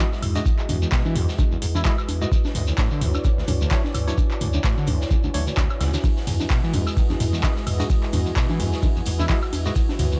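Heard through studio reverb with a dark, warm production, this raw, playful acid house excerpt moves at 129 BPM in E mixolydian with a swung 16th feel, shifting between Emaj9 and Dmaj9 chords. An up-front deep electronic kick and a tape-warm analog drum machine with metallic hats, congas, handclaps, toms, ride and woodblock drive the groove. They are joined by a gritty, high-tuned garage kit in the background, a grainy vintage shekere, and a thick saturated sub bass pumping under a squelchy, resonant overdriven acid riff. Above them sit a moody detuned analog pad, a hollow organ stab with tape echo, and a distant ambient pad, while a breathy, wah-wah plunger-muted trumpet appears only in brief phrases at 1.8 and 9.2 seconds.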